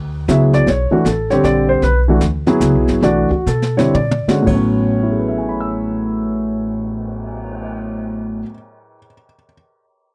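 An upright bass opens this short, relaxed jazz piano trio fragment in A major, its woody pizzicato tone on steel strings sitting in the low register. A baby grand piano and a brushed drum kit join at 0.3 seconds. The swung 3/4 feel moves between 109 and 156 BPM, slowing down from 1.8 to 4.5 seconds, while the piano carries the melody, intimate and up front with a long sustain and audible action noise. Heard quietly with dark cymbals, a medium-tuned snare and a punchy kick, the kit adds a fill just before the harmony moves from a run of minor and seventh chords to a settling A69 chord at the start of a new passage. The sound is dry and close, in the manner of a 1970s studio recording, with the mellow glow of the piano at its center.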